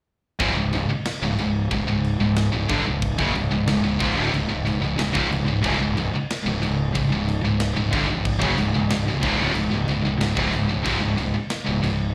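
A growly, punchy fuzz bass sits up front in this relentless, heavy metal excerpt at 92 BPM. From 0.4 s it lays down a low C#5 foundation beneath a bright, double-tracked overdriven guitar with slapback echo, a high-gain guitar with distortion and slapback echo set in the background, and a scooped high-gain guitar. A tight acoustic kit with a medium-tuned snare, tight kick and crash cymbal plays in a big room, and the whole performance comes through a club PA with light reverb until about 12.1 s.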